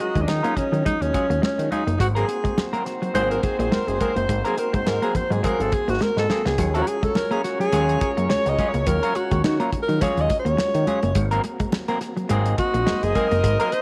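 A breathy, up-front alto saxophone carries the melody over this sly, cool funk clip in Eb dorian at 105 BPM with a light 16th-note swing, shadowed by a mellow, distant horn section with octave doubling. A dark semi-hollow electric guitar with a warbly pitch drift, a compressed clean guitar riff in the background, and a very quiet tonewheel organ with slow rotary shimmer fill out the Ebm11 and Ab9 harmony. A fat, detuned analog bass sits up front alongside a dry, damped 70s drum kit, which plays a fill at 6.0 s, and soft close-miked congas, all in a small, lightly reverberant room.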